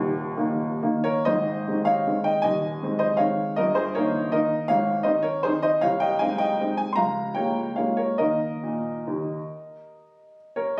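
A solo upright piano opens the recording, clear and woody, sitting up front with a slightly detuned character and short sustain. This is a graceful, playful classical waltz in 3/4, taken with a rubato feel that lets the pulse breathe. The piano covers a broad range, from deep bass notes up into the treble, as the harmony moves from an opening Eb to Ab at 1.3 seconds and onward through Eb7/G, Ab/C and Bbm7/Db before settling on Eb5 at 8.2 seconds. A light reverb gives the instrument a touch of space, and the room carries the ambience of a club. Captured on a phone in the room with some compression, the sound feels present, and this brief passage, cut from a longer piece, runs to 10.8 seconds.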